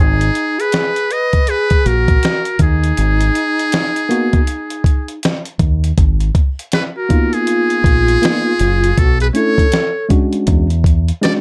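Jazz-hop with a nocturnal, cool mood, this short piece cut from a longer work rides a swung hip hop groove in 4/4. A muted trumpet carries the melody, its buzzy, thin tone softened by light vibrato and a gentle attack, while an airy, hollow concert flute traces a second line beneath it. Up front, a deep, round fingered electric bass and a gritty sampler-style drum kit with a thumpy kick and fat snare anchor the groove, the drums sounding compressed and re-recorded in a small room. At 4.1 seconds a worn, slightly out-of-tune electric piano joins as accompaniment, lightly overdriven through its built-in speakers. The harmony moves from G#m9 to G#m69 at 6.0 seconds before shifting through Bm11 and E13, all set in a dark production with light reverb.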